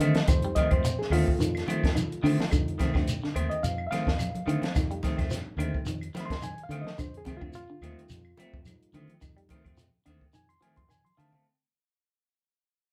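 Funky and driving, this short afrobeat excerpt at 107 BPM in F mixolydian rests on an F7 chord, with a reedy, lightly overdriven electric piano soloing over picked stabs from a clean semi-hollow guitar, phaser-tinged arpeggios from a twangy guitar at the edge of break-up, a round foam-muted fingered bass, an up-front compact cocktail kit with a punchy kick and high-tuned snare, grainy shekere, damped congas and woody claves in a small live room, fading out throughout and closing on a drum fill at 10.8 seconds.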